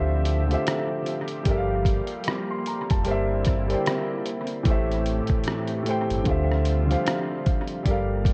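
A woody upright piano sits up front in this short, reflective lo-fi hip hop excerpt, its long-sustaining accompaniment colored by cassette tape, a low-pass filter and analog delay. Beneath it, a detuned sawtooth pad holds smooth, soft-attack chords treated with chorus, tremolo and its own low-pass filter. A deep, full sine sub bass with an octave layer anchors the low end with fast-attack, sustained notes. At 0.3 seconds a muffled, pitched-down sampler-style kit joins with hi-hat, a thumpy kick and rim click, compressed and sounding re-recorded in a large room, with analog delay on it. The melancholic progression moves from Dm11 through Gm9, C9/G and Am7 before returning to Dm11, with a gentle swing on the 16ths. Light reverb, an echo-heavy mix and cassette tape coloring give the whole excerpt its warm lo-fi character.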